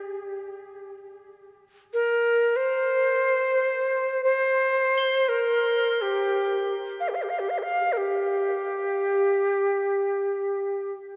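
World meditative music in free time and G minor pentatonic, this spacious, unhurried passage is cut from a longer piece, with soft, shimmering crotales ringing high in the background from the start. At 1.9 seconds an airy, up-front cedar flute enters with a straight, tongued tone and a touch of chiff, carrying the melody through a tape echo until 10.9 seconds. A vast cathedral reverb with a long 4.7-second tail surrounds the sound in a deep, echoing space.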